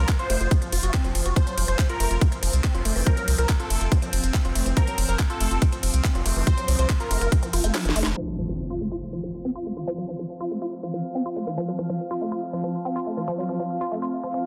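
A tight, tape-warm electronic kick drives this intense, psychedelic trance drop alongside a round, deep analog bass with tube saturation and a garage drum kit of cracking snare, crisp hats, ride and handclaps. Above them, a bold, detuned unison lead carries the melody through phaser, 12-bit sampler grit and tape echo, while a nasal vowel-sweep wobble bass and an overtone-sweeping drone pump in the background beneath a pumping woody wave-folded pluck riff. As a drum fill plays, the kick drops out, and at 8.2 seconds an electronic impact opens a filter-swept passage where a cloudy, evolving granular pad enters at 9.4 seconds over the lingering drone and pluck in a dense, heavily limited mix.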